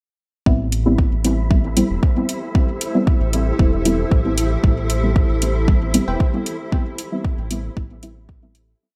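This hypnotic, meditative dub techno piece opens at 0.5 seconds with a deep, up-front four-on-the-floor kick, a round, dark dub-style bass line and a soft, nasal chord stab on Am7 that plays dotted-rhythm chords, one shape moved in parallel, coloured by chorus, phaser, a filter sweep and trailing dub echo. Metallic, overdriven programmed hi-hats and a backbeat join at 0.7 seconds, and from 1.0 seconds an airy, breathy wind-like noise layer holds a high note just beneath the surface. A cloudy, blurred granular pad with a slow attack and long release drifts in behind the stabs, its sustained chords pumping against the kick along with the bass, stabs and texture. Near the close, a crisp, detuned wavetable stab flickers briefly with sparse echoing chords as the whole piece fades out from 6.0 seconds, finishing in light reverb.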